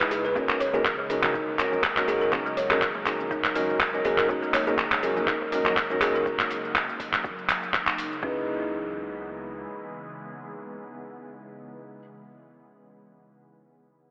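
Swung 16ths at 122 BPM drive this hypnotic afro house piece in C# dorian, where an up-front, overdriven deep house kit of handclaps, hi-hat and shaker sits over a deep, distorted electronic kick and very quiet, ringing high-tuned congas, while a round analog bass hums far back, woody kalimba arpeggios and soft felt-muted upright piano stabs pump with sidechain and echo through analog delay, and an ethereal, chorused pad sustains airy chords, the mix drenched in a 7.2-second cathedral reverb with a telephone-like tone as the kit drops away at 8.2 s and the harmony shifts from D#m7 to C#m7.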